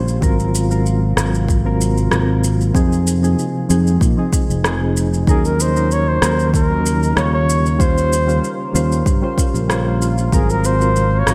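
Bright 1980s-style digital production bathed in a lush hall reverb carries this wistful sunset chillout excerpt at 95 BPM in Eb dorian, where soft, round electric-piano-like synth keys with chorus, tremolo and delay ride over a shimmering ambient pad, an up-front fingered electric bass, a deep electronic kick, and an electronic shaker and rim click with gated reverb, until a breathy flugelhorn with vibrato, scooped notes and delay enters at 5.3 seconds to carry the jazz-style melody.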